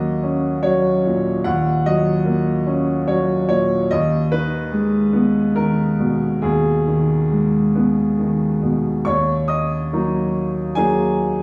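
Set in a wet recital-hall reverb, a clear, slightly boxy baby grand piano sits up front, its long sustain blooming into the room on this melancholic, intimate fragment of neoclassical minimalist piano in Eb minor. Played solo in a rubato 3/4 at roughly 68-75 BPM, it spans Eb2 to Eb6, moving from Ebm7 to Abm/Eb at 3.9 seconds before settling onto Ebm as a new section opens at 9.1 seconds.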